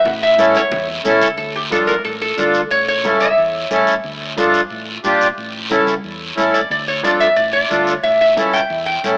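Danceable and driving, this short cut from a longer cumbia moves at 180 BPM in a straight 4/4, rooted in D harmonic minor and alternating between A and Dm before landing on A7 at 8.0 seconds. A metal-body resonator slide guitar sits up front with a bright, nasal, metallic bite, played with fingerpicks and a steel bar, carrying a soloing line through an analog delay; it drops out at 3.8 seconds and returns at 6.5. A reedy accordion, also up front, enters at 0.4 seconds with slow beating in its tone, holding the accompaniment in a narrow middle register. Underneath, a dark, round, punchy fingered electric bass anchors the low end, while raspy guiro and ringing, medium-tuned congas struck with hard hands keep the percussion going, the congas set back in the background. The whole mix has an AM radio character bathed in a moderate plate reverb.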